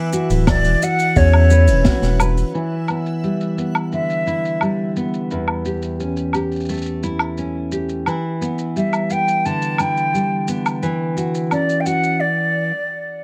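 Fingerpicked nylon-string guitar stands out in this delicate, intimate folktronica excerpt, its full-bodied classical tone up front with audible finger squeak, softened by a low-pass filter, plate reverb and tape echo, and a filter sweep on it from 2.5 seconds. A bright, reversed swelling texture with a dreamy, detuned, granular shimmer sits in the background only for the opening moments, while a round, deep analog bass and a muffled, thumpy pitched-down electronic kick anchor those first seconds before dropping away by 2.4 seconds. The band hits an accent just before the guitar's sweep begins, as the music moves into its longer second section. An airy, straight-toned silver flute carries the melody with a crisp attack, sounding distant yet up front through plate reverb and tape echo. Brushes on an acoustic jazz kit, with a dark, smooth character and a high-tuned snare plus hi-hat, shaker and woodblock, keep a gentle straight pulse in a moderate studio room, with harmony drifting from Bmadd9 through G6/E, A7/E and Em7 before returning to Bmadd9.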